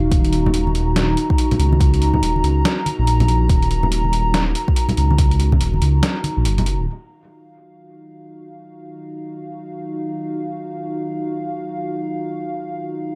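A dark analog pad and a detuned saw bass open this excerpt of deep dubstep together, the pad holding sustained Eb minor chords with a slow attack, chorus and a ring-modulated edge while the bass rumbles low and up front. Within the first second an electronic kick drum, a gritty pitched-down sampler-style kit of hi-hat and snare, and soft-handed, damped congas join in, moving at 142 BPM in a swung, half-time 4/4 feel under light reverb. The layered kick carries a tape-warm depth, the compressed snare sits at a medium tuning, and the low-tuned congas add thick-skinned, acoustic texture, all re-recorded in a small room. The kick drops out around 5.6 s, and by 6.9 s the bass and remaining percussion have fallen away, leaving the moody pad alone on an Ebmadd9 chord as a filter sweep runs across it until 13.2 s. The mood stays dark and cavernous throughout.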